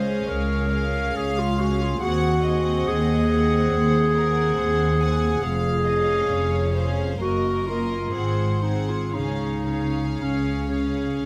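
A moderate stone-room reverb surrounds this short classical excerpt, a slow romantic movement for symphony orchestra in Db major, moving at 55-72 BPM in 4/4 with a rubato feel and a serene, tender mood. Up front, a warm solo clarinet carries a prominent second line, with a distant, roomy quality, while a clear violin section floats the melody high and softly behind it. A second violin section adds a gentle, soft-attacked second line, and a rich viola section fills out the accompaniment, both bowed sul tasto for a pure, floating tone. Beneath them, dark cello and double bass sections anchor the bass with light vibrato, sounding close and intimate. The harmony moves from Db through Ab7/Eb, Db/F and Ebm/Gb to Ab7, settling back on Db at 9.2 seconds, and every part sounds throughout the 11.3-second passage.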